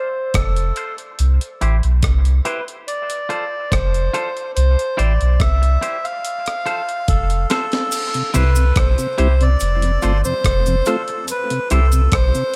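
A gritty, pitched-up breakbeat kit with a thumpy kick and tape-warm compression sets a straight 71 BPM dub reggae groove in C major under a deep, round sine sub bass, while a reedy, breathy melodica carries the melody through dub echo and a twangy, spring-reverbed electric guitar accompanies in this spacious, hazy excerpt cut from a longer piece, with a drum fill at 7.1 seconds leading into a passage where a dark, mellow tonewheel organ on slow rotary speaker and a close, dry cabasa in the background enter around 8 seconds and a bright, very quiet clean electric guitar plucks a brief riff.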